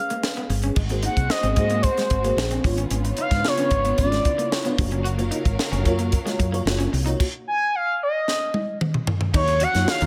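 The recording has a polished sound, with light reverb and a small-room ambience around a 1980s jazz-funk pop groove that feels bittersweet and nocturnal, heard here as a short cut from a longer piece. Up front, a smooth, mellow lead with a sawtooth-triangle tone and a soft attack carries the melody, gliding with portamento and vibrato through a chorus effect. Beneath it, an FM electric piano layered with a soft pad supplies lush, dreamy, decaying chords through an ensemble chorus, while an electric guitar at the edge of break-up plays a picked, twangy, compressed riff bathed in a lush chorus of its own. A tight funk drum kit sits close and dry, with bright cymbals, a high-tuned snare and gated reverb, and a woody fretless bass enters at 0.5 seconds with a round, punchy, hollow-bodied tone. A bowed string section joins at 0.8 seconds in the background with warm vibrato, and the harmony drifts through rich extended chords before a drum fill from 8.3 to 9.3 seconds leads into a minor ninth chord.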